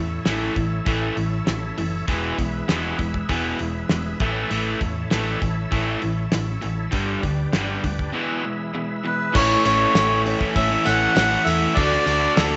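A driving, swaggering classic rock groove in A major at 99 BPM opens with a bright, distorted electric guitar riff stacked over a second overdriven guitar riff sitting in the background, while a dark, round hollow-body bass holds the low end and a gritty tonewheel organ sustains chords behind them through a slow rotary speaker with chorus vibrato and audible key click. A cloth-damped drum kit enters at 0.3 s with a thuddy, tight kick, a fat snare, dark cymbals and hi-hat, its top rolled off as if played in a small room. The harmony moves from A to E, back to A, then through G and E, and at 9.1 s a reedy, breathy melodica steps up front with a slapback echo. Just after, as the passage lifts into its second section, a woody upright piano with audible action noise adds accompaniment, a crunchy double-tracked guitar joins the riffing, and a faint, jingly tambourine rounds out the percussion as the chords shift from A to D. 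The whole mix sits in moderate echo-chamber reverb with a studio ambience and a dark, capped top end, and the clip is cut from a longer piece.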